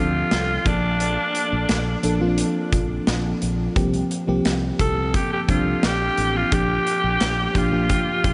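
A raspy, gritty alto saxophone carries the melody up front with vibrato and tape echo, riding over a mellow FM electric piano with chorus and a dark, round fretless bass soaked in lush chorus, in an urgent, dramatic 1980s-style pop excerpt at 87 BPM. A big, punchy rock drum kit joins at 0.3 seconds with hi-hat, kick and snare as the harmony moves from Dm7 through Bbmaj7 to C7sus4. The dreamy mix is drenched in a huge ambient reverb with an 8.0-second tail, its top end softened.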